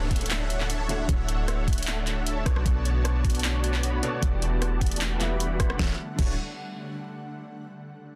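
Huge, detuned supersaw chords carry a bright riff through this playful, half-time future bass excerpt at 153 BPM in D major, pumping against a knocking, tape-flavored electronic kick and a deep, boomy 808-style bass, with filter sweeps running on both the supersaw and the bass until 5.8 seconds. An overdriven dubstep kit with a deep snare, handclaps, rim clicks, hi-hat and crash drives the groove. Further back, a clear grand piano with digital delay and a shimmering, ethereal pad from 0.8 seconds fill out the Dmaj7, Bm9 and Em11 changes, while a downlifter sits in the background for the first few seconds over a dense, dry, heavily limited mix.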